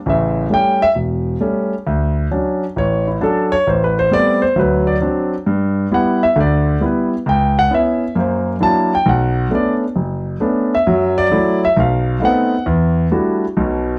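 Playful and warm, this swinging jazz excerpt moves at 133 BPM in D major, carried by a solo concert grand piano that ranges from E1 to A5. The piano sits up front in a moderate small room, with an intimate, natural tone, deep bass, long sustain and audible action noise. The harmony moves from A7 to Dmaj7 at 1.9 seconds, then passes through extended chords such as Am9, F#aug7 and B7b9 before reaching Em11 at 12.7 seconds.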